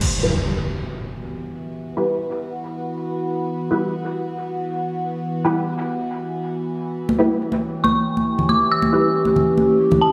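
Cavernous and brooding, this deep dubstep passage moves at 138 BPM in a half-time feel with a light swing on the sixteenths, resting on a single E minor chord in E dorian. An up-front electronic impact opens it, ending by 1.8 s, while an overtone-sweeping drone holds sustained chords throughout, its bright, wave-folded tone shifting through moving overtones and a resonant notch, thickened by chorus and its own reverb. From 0.2 s, filtered dub chord stabs punctuate the space with muted, detuned sawtooth and square-wave plucks over a sub octave, dark and evolving through phaser, ensemble chorus and dub echo. Bright, high-tuned congas with a thin skin join up front at 7.1 s, and shortly after, a dark detuned synth bell carries an eerie, inharmonic FM melody high in the register, mellow and full-bodied with chorus and dub echo trailing its long release. A wet, lush hall reverb wraps the mix in digital ambience, and the recording is cut from a longer piece.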